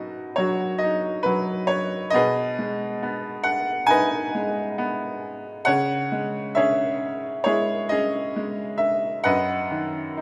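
Moving in an unhurried 4/4 at 67 BPM with a free, rubato pulse, this short stretch of classical solo piano unfolds with a calm, lyrical character in B major. A bright upright piano carries everything alone from 0.0 to 10.2 seconds, ranging from F#2 up to G#5, its tone brilliant and woody with an open quality and short sustain. The harmony settles on B, shifts to G#m/B at 2.1 seconds, moves to C#m at 5.7 seconds, and arrives on B/F# near the close. The instrument sits up front in a recital hall whose moderate reverb, around 1.8 seconds of decay, lends the passage a gentle sense of space. Cut from a longer piece, it leaves an impression of warmth and calm.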